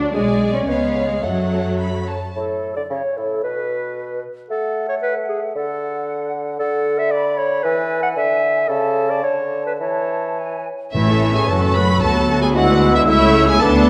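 In a supple, rubato two-beat metre, this quick, graceful and spirited classical-period orchestral passage opens with a close, expressive violin melody, a focused second violin line, smooth violas, lush symphonic cellos, soft-attack double basses and tight background French horn chords. The strings and horns fall away by 2.4 seconds, leaving a hollow, crisp-attack flute group, a soft-attack solo clarinet and a roomy bassoon to carry the music. The full ensemble returns at 10.9 seconds with a brief stroke of dry, hard-mallet timpani, all set in a dark recital-hall reverb.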